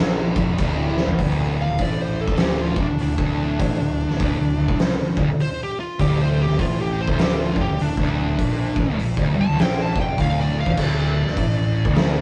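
An oversized, low-tuned drum kit sits up front in this brooding, hypnotic slice of stoner and doom metal cut from a longer piece, entering at 0.4 seconds with a punchy kick, fat snare, toms, hi-hat, ride and crash, all given a saturated, gritty edge by vintage 12-bit sampler grit and a bright stone-room character. Beneath it, a double-tracked fuzz guitar grinds out the riff in a low register, while a fingered electric bass adds a growly, overdriven weight from its own depths. The groove swings in 4/4, and a short drum fill at 0.9 seconds leads out of the brief opening passage, where the harmony moves from a minor chord to a bare power chord. From 1.6 seconds a compressed, picked fuzz lead guitar carries a solo in a much higher range, riding over the heavy bed until the cut. A moderate studio reverb and a rough rehearsal-room sound, printed to cassette tape, give the whole piece a murky, lived-in feel.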